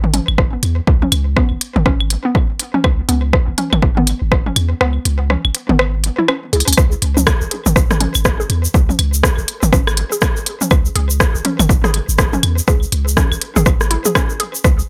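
A punchy analog kick sits up front in this clinical, hypnotic minimal techno cut in C# minor at 122 BPM with a 16th-note swing, dropping out from 4.8 to 6.8 seconds around a drum fill, while a deep sine sub bass with a pitch-drop attack and sidechain pumping, a tape-warm click kit of claves, rim clicks and toms through digital delay, crisp layered garage hi-hats and rim clicks, and a hollow, bouncy, warbling square-wave pluck riff with chorus, delay and pumping fill the dry mix, joined at 6.8 seconds by a grainy, bright egg shaker.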